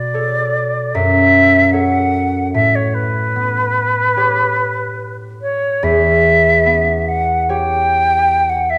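Bathed in a wet recital-hall reverb, this hazy, wistful impressionist classical excerpt pairs an airy, expressive concert flute melody with vibrato, set slightly forward in the balance, over a mellow, ringing, fingerpicked concert harp accompaniment that moves through Bm9, F#m7, A9 and Em6 in a rubato 4/4 feel across its 8.8 seconds.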